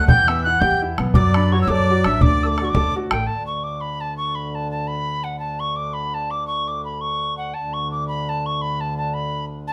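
A wooden whistle carries the melody up front from the start, its pure, warm chiff and crisp attack shaded with vibrato, running through the whole 9.7-second excerpt of this lively, cheerful Celtic jig in D major at 113 BPM in 6/8. Beneath it in the opening passage, a mellow, ringing Celtic harp and a sweet, airy accordion with light tremolo tuning add second lines, while a clear upright piano with audible action noise and long sustain supplies accompaniment over Em and D/F# chords. A growly pizzicato upright bass on steel strings and an open, boomy bodhran, close and dry, drive the rhythm until about 3.3 seconds. At that point most of the band drops away and a reedy, nasal hand-pumped harmonium takes over with a breathing drone on D beneath the whistle, while the harp lingers until about 4.5 seconds before the whistle continues above the drone. The group sounds as though it is playing live together in one room, with moderate studio reverb.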